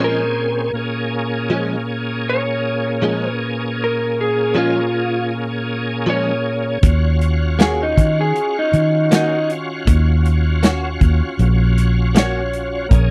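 Smoky and soulful, this short excerpt of straight-eighth soul blues moves at 79 BPM in 4/4, opening on Bbm7 as a slightly broken-up, lo-fi electric guitar through a small old amp carries the melody over a shouting tonewheel organ with slow rotary speaker, light overdrive and chorus vibrato, while a bright, direct-recorded clean guitar with ensemble chorus plays up-front stabs. At 6.8 s the harmony shifts to Ebm7 and the rhythm section enters: a round, foam-muted fingered bass and an up-front soul drum kit of hi-hat, tight kick and medium-tuned snare. The sound is dry and close, in the manner of a 1970s studio recording.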